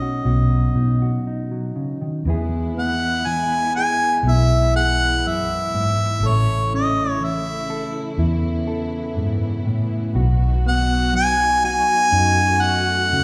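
A warm harmonica opens this tender acoustic folk-pop ballad, carrying a classical-style solo melody up front over a mellow, clean electric guitar that is fingered in accompaniment from the start. At 0.3 seconds a vintage electric bass enters, its fingered tone amped, foam-muted and round. Together they move from a Badd9 chord into the main passage, which begins at 2.3 seconds on E, then passes to A and B. At that point a chamber string section joins with soft-attack sustained chords, bowed sul tasto with light vibrato for a dark, close, intimate shading. The whole piece sits in a wet recital hall reverb that suggests a church or concert hall, giving the slow, straight pulse a quiet, spacious glow. This is a short section cut from a longer piece.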